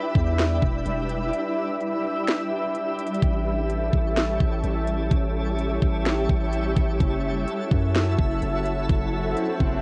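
A shimmering, ethereal ambient pad and a twinkling granular texture open this hazy, melancholic atmospheric cloud-rap excerpt, with the pad's detuned sine tone carrying chorus, an octave-up shimmer, sidechain pumping and a cassette-tape softness, while the sparkling FM texture glints alongside it with built-in reverb. At 0.2 seconds a deep, long 808-style sine bass and an electronic trap drum kit enter up front, the kit's knocking kick, sharp snare and crisp hats set in a half-time 4/4 feel at 127 BPM. A break runs from 1.3 to 3.2 seconds. The harmony in E dorian moves from Em7 to A7 and then F#m7, the mellow pad holding those chords on slow attacks and long releases. An electronic swell sits in the background at the very end, and the whole piece has a lightly reverberant, home-recorded cassette character.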